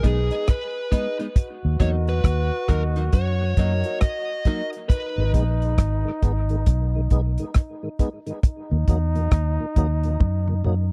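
Dub reggae in G# minor at a heavy, hypnotic 68 BPM with swung sixteenths, built on a round, foam-muted fingered bass and a damped 70s drum kit with a tight kick and rolled-off top sitting up front, while a bright, soft-attack trombone carries a second line throughout beneath a dark, overdriven lead guitar melody, a clean, compressed electric guitar with subtle chorus and mellow grand piano stabs, all soaked in dub echo, until a lightly overdriven tonewheel organ with chorus vibrato and slow rotary speaker takes over the accompaniment at 5.2 seconds and a drum fill arrives at 10.2 seconds, captured in a dry, close 1970s-style studio sound.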